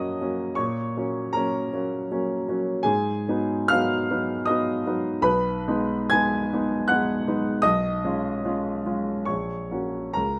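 Serene and tender, this brief excerpt from a longer romantic nocturne for solo piano unfolds in a flexible, rubato 3/4, with a clear, present grand piano sitting up front under close, detailed microphones and light reverb, ranging from A#1 to G#6 as it moves through gentle F# major, G#m7 and C#7 harmonies across its 10.4 seconds.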